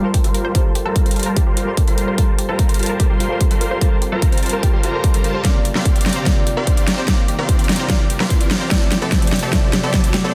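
Dreamy and emotional, this future bass build-up moves in a half-time feel, cut from a longer piece and spanning just over ten seconds. A huge, thick supersaw riff carries the lead, detuned and compressed with a faint vibrato, its low-pass filter sweeping across the whole passage while sidechain pumping and digital delay shape its pulse. Beneath it, glassy wave-folded keys with chorus sit in the background, joined by a lush, bright unison pluck playing arpeggios that also sweep through a filter and pump with the mix. A punchy electronic kick sits up front alongside a big-room kit of metallic hats and a massive snare, with a drum fill arriving from 5.4 seconds, while a very quiet riser creeps in at 2.7 seconds. The harmony drifts from Gm11 to C9sus4 and Am7 under light reverb, all pressed into a dense, heavily limited modern master.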